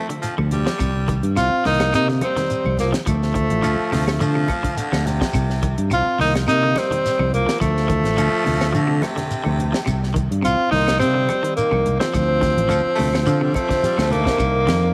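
A breathy, whispered tenor saxophone carries the melody up front in this hypnotic, funky afrobeat excerpt at 106 BPM in C dorian, with a tape-echoed, raspy baritone saxophone and a growling, bucket-muted trombone on second lines over a round, dark fingered bass, a tight dry funk kit with bright cymbals, faint clean guitar arpeggios, grainy shekere, woody claves and soft-handed congas, all in a small room as the chords alternate between Dm and Cm before a drum fill at 13.7 seconds.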